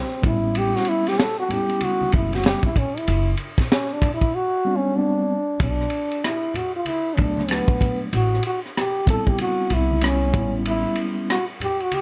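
Jazz-hop with a cool, mellow swing, led by a close-miked, up-front trombone singing with vibrato over a gritty, saturated breakbeat kit with dark cymbals, a high-tuned snare and tight kick, a woody pizzicato upright bass, a clean tine electric piano heard through its built-in speakers, and ringing egg shaker and congas in the background, all in a small room, with the trombone's solo opening giving way to a silent gap from 4.3 to 5.6 seconds before the band carries the rest of this excerpt.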